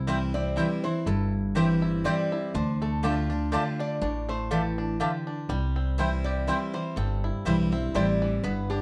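A dark, warm studio sound with a moderate room reverb frames this haunting, lonesome bluegrass tune, cut from a longer piece and moving at 122 BPM in 3/4 with a light swing on the eighth notes. Up front, a bright, full-bodied jumbo acoustic guitar carries the picked accompaniment, and beside it a woody pizzicato upright bass on steel strings holds down the low end. A mellow mandolin with doubled strings adds picked stabs from 0.1 s, and from 0.3 s a lap resonator guitar played with fingerpicks and slide sings a metallic, nasal melody line. Sitting furthest back in the mix, a twangy, percussive banjo, also fingerpicked, shares the melody. The harmony rests on C, shifts to Dm at 2.5 s, and returns to C.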